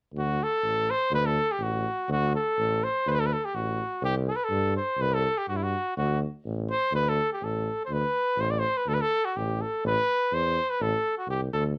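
Balkan folk in a festive, virtuosic mood and a swung 2/4, with a clear cornet carrying the melody up front in a classical style with light vibrato over a smooth-topped, lightly saturated tuba bass that also has a touch of vibrato, both sounding through nearly the whole clip in a moderate studio room and colored by the warbling pitch drift of worn cassette tape.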